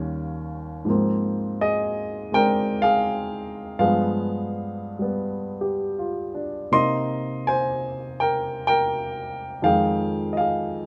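A grand piano sits up front in a lightly reverberant space, its tone warm and its notes decaying quickly, with short sustain. This is solo jazz at 82 BPM in 4/4, with eighth notes swung at 67%, giving a playful lilt and an inviting warmth. The piano carries the whole 10.9-second passage alone, spanning from Eb2 up to C6. The harmony moves from Eb7 into Ab69 at 0.9 seconds, then through G7b9 and Cm7 before arriving at Fm9 at 9.6 seconds. Tuned to A4 = 441 Hz, the fragment is cut from a longer piece.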